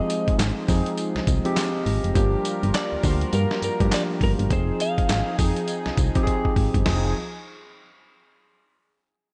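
A swung sixteenth-note groove at 102 BPM drives this punchy, bouncy new jack swing cut in F dorian, taken from a longer R&B piece. Up front, a gritty, pitched-down boom bap sampler-style kit with a thumpy kick, medium-tuned snare, handclaps, hi-hat, tambourine, crash and toms is compressed and bathed in gated reverb, while a round FM bass with fast attack and quick decay enters at 0.3 seconds to anchor the low end. Soft electric-piano-like synth keys with a wave-folded, filter-swept tone and chorus carry the accompaniment and slip in a fill between 1.0 and 2.2 seconds, as a detuned sawtooth analog pad with chorus sustains smooth chords in the background. A clean, picked electric guitar, compressed and touched with tape echo, plays a melody until 5.4 seconds, over harmony moving from Fm7 to Gm7 and back to Fm7. A drum fill at 6.3 seconds leads into a new section, and the dry sound keeps the groove tight and intimate.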